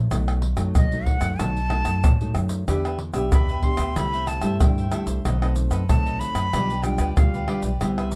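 Samba and choro at 94 BPM, nostalgic yet lively, cut from a longer piece. A thumb-plucked nylon-string guitar and a woody pizzicato upright bass move through B7, Em7, C6, B7b9 and G7/B, with an up-front small-room percussion section of tube shaker, tight surdo, pandeiro and tamborim played with soft hands. A breathy, bright jazz flute with vibrato, chiff and plate reverb carries the melody from 0.8 s, and a crisp, picked cavaquinho joins quietly at 2.7 s, all within a dark production.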